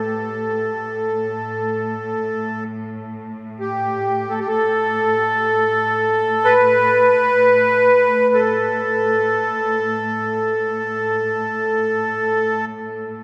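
In free time, this short excerpt from a longer Caucasian folk lament, tuned to A4 = 441 Hz, carries a longing, solemn mood as an up-front, reedy accordion with light tremolo tuning sings a sweet, narrow melody between G4 and B4 until 12.7 seconds, over a clear, smooth cello section sustaining a bowed drone on A2 with light vibrato, all bathed in the lingering 4.7-second reverb of a church or concert hall.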